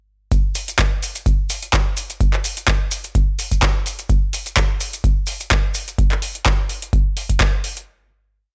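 A deep, tape-warm electronic kick sits up front in this short, raw and hypnotic house piece with a four-on-the-floor pulse, while an analog drum machine adds metallic closed and open hats and a handclap backbeat, grainy, mellow hand-played maracas sit in the background in swung sixteenths until 6.0 s, and the dry, small-room sound carries a faint mains hum before a final hit at 7.9 s.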